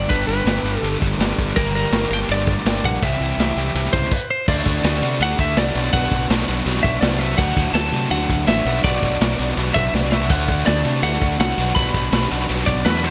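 A jangly twelve-string electric guitar carries the melody from the first second, its clean, compressed, twangy picking lifted by delay in this upbeat indie rock excerpt at 165 BPM in D mixolydian. Beneath it, a crunchy, double-tracked overdriven guitar picks out an up-front riff colored by harmonic tremolo, while a fuzz-soaked fingered electric bass, direct and amped with overdrive, growls alongside. A vintage drum kit enters at 0.1 seconds with a punchy kick, medium-tuned snare and dark, muffled cymbals, its small-room, lo-fi sound given a gated reverb and a rolled-off top. The harmony moves from G, G minor and C into a passage alternating D and B minor from 4.5 seconds, with a brief drum fill at 9.9 seconds. The whole has a bright 1980s-style digital production with light reverb, and it runs to 13.1 seconds as a cut from a longer piece.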